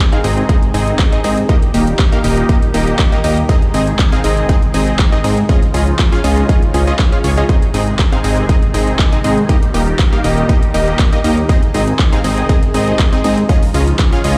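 Progressive house with a euphoric, uplifting mood, this short passage cut from a longer piece moves in a straight 4/4 metre through a bright cycle of chords that returns to the home chord and passes through an added-ninth colour. An overdriven electronic kick sits up front, punchy and layered, and enters at 0.5 seconds beside a big-room kit of handclaps and metallic hi-hats that also carries overdrive. A fat, thick analog bass built from detuned sawtooth and wave-folded triangle tones drives the low end with a fast attack and a filter sweep, pumping against the sidechain. Over it, punchy unison supersaw stabs ring out with delay and their own sidechain pulse. Behind them, an evolving, soft-attack supersaw pad holds sustained chords through a phaser, lending a gentle glow in the background. The mix is loud and fairly dry, with a big, roomy studio space around it.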